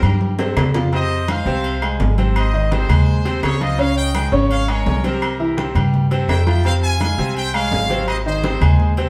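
Fiery and driving, this salsa cut from a longer piece runs at 168 BPM in F minor, opening with a drum fill before the brilliant trumpet section takes the melody with vibrato at 0.9 seconds over chords moving from Fm through Ab, Db5 and C7. Up front, a bright grand piano with audible action noise and long sustain plays the accompaniment, while a dark, thumpy pizzicato upright bass with steel strings anchors the low end. Ringing agogo bells and timbales, thick-skinned congas set in the background and very quiet woody claves fill out the percussion, all captured as a band playing live in one stone room with a wet reverb.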